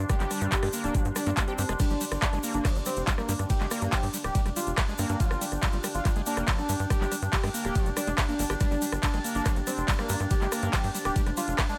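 Alien and driving, this psychedelic trance excerpt runs at 141 BPM in G minor, with a tight, punchy sawtooth sequencer bass and an up-front knocking electronic kick anchoring a layered, tape-tinged drum kit of handclaps, metallic hi-hats, ride cymbal and rim clicks, plus a grainy egg shaker in the background. Above them, a thick, nasal detuned unison lead with phaser and dub echo shares space with a squelchy, gritty overdriven acid bass riff, both pumping against the kick. In the background sit an overtone-sweeping resonant drone and a deep, moody ambient pad, each chorused and reverberant, while a very quiet electronic swell surfaces briefly at 1.2 seconds.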